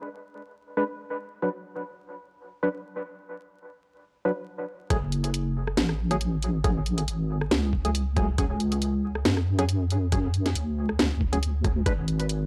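Deep dubstep with a brooding, heavy mood, moving in a swung half-time feel. From 0.8 seconds a hollow, organ-like percussive stab plays dark, decaying chords through analog chorus and dub echo, drifting from a diminished chord into B minor. At 4.9 seconds the drop arrives: a deep, soft wobble bass with chorus sits up front, round and sustained, alongside a thumpy, pitched-down kick with a gritty, tape-warm character. A layered garage kit joins at the same moment, its cracking snare, hi-hat and rim click placed close and forward, as the harmony shifts to F# minor add9 and then a suspended C# chord. The whole fragment carries a dry, saturated hardware sound dusted with vinyl crackle, and it breaks off around 12.5 seconds as part of a longer piece.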